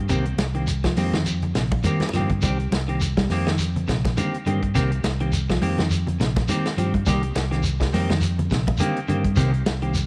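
The round, dark fingered electric bass stands out most, anchoring this funky, defiant afrobeat excerpt at 104 BPM in C minor, with a swung sixteenth-note feel over a single Cm7 chord. Two clean, picked electric guitars fill out the harmony: one plays arpeggios in the background with a dark tone and a slapback echo, while the other plays twangy stabs colored by a subtle chorus. The soul drum kit sounds distant and roomy, with a tight kick, a medium-tuned snare and hi-hat, and it breaks into a brief fill at 2.0 seconds. Congas with a thick skin sit close and dry in the background, and a grainy, saturated shekere adds compressed texture. A light studio reverb places the ensemble in a shared space across this short cut from a longer piece.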